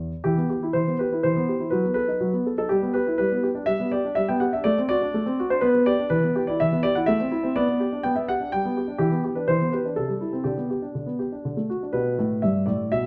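A straight three-beat lilt carries this graceful, elegant classical-period piano sonatina, heard as a short cut from a longer piece. A solo concert grand plays throughout, spanning from a deep bass register up into the upper treble. Its tone is warm and up front, with short sustain. The harmony moves through minor chords, seventh chords and inverted chords, settling into G major from 6.1 s. A new passage begins at 12.0 s before the recording breaks off at 13.1 s. Close, detailed microphones capture the instrument, set within a moderate recital-hall reverb that adds a gentle sense of space.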